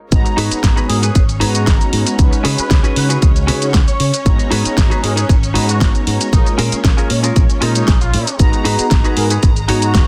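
Sensual and sleek, this nu-disco excerpt moves at 116 BPM in G# dorian, cycling through G#m7, C#7sus4 and A#m7 chords. A punchy, up-front electronic kick leads the beat alongside a pop drum kit with a fat snare, warm hi-hats and shaker, while a bright, envelope-filtered fingered electric bass pumps against the kick with sidechain ducking. A round, detuned synth brass with chorus and cassette-tape grit, a lush bowed string section in the background, and a twangy, scooped clean guitar riff with shimmering chorus fill out the groove, and a mellow trumpet section enters at 0.9 s carrying the melody with delay, all within a dense, heavily limited modern master.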